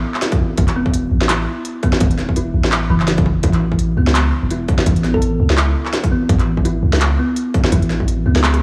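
Gritty, cassette-worn hardware sound with small-room ambience frames this dark, heavy half-time drum and bass excerpt, where a woody, hollow kalimba plays arpeggios through analog delay over a deep, long 808-style sine bass, an up-front distorted electronic kick and an overdriven industrial kit of clanging snare, crisp hats, handclaps and rim clicks, while a round, tine-like FM synth pluck surfaces briefly in the background at 5.1 s before a drum fill at 8.4 s.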